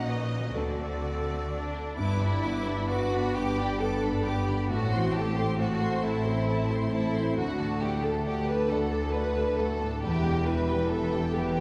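Steeped in the reverb of a recital hall, this brief emotional film-score passage in a rubato 6/8 carries a longing, sorrowful mood as a lush violin section sings the melody over a smooth, up-front second violin line. A hollow concert flute adds its own second line until 2.0 s, when a mellow French horn section enters with sustained chords. Beneath them sit a felt-muted upright piano, a distant viola section with portamento, ringing thumb-plucked harp arpeggios, and a bass line of bowed cellos and soft-attack double basses.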